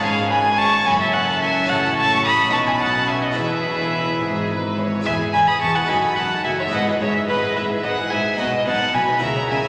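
A dark, close solo violin with an airy bow and gut-string tone sits up front, carrying the melody in this lively, brilliant baroque-style concerto fragment in a straight 6/8. A chamber violin section also carries the melody, pitched higher, with a rich, reedy sheen, while a very quiet second violin line, background violas, and a full, Italian-style harpsichord fill in the harmony. Nasal-toned cellos and warm double basses in the background anchor the bass, all bathed in a long, wet church reverb.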